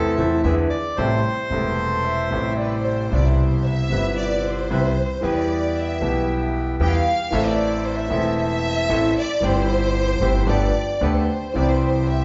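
A rubato tango pulse in 4/4 at 113 BPM drives this dramatic, tense passage in A minor, where a reedy, up-front bandoneon carries the melody until 2.5 seconds over a smooth, vintage concert grand piano with deep bass, a pizzicato upright bass with a woody, thumpy gut-string sound, and airy bandoneon stabs set back in the mix. A mellow clarinet briefly adds a classical-style second line before a lush, bowed violin section with vibrato comes forward and becomes the solo voice when the harmony turns to C major at 3.1 seconds. The sound sits in a reverberant recital hall with a rolled-off, softened top end.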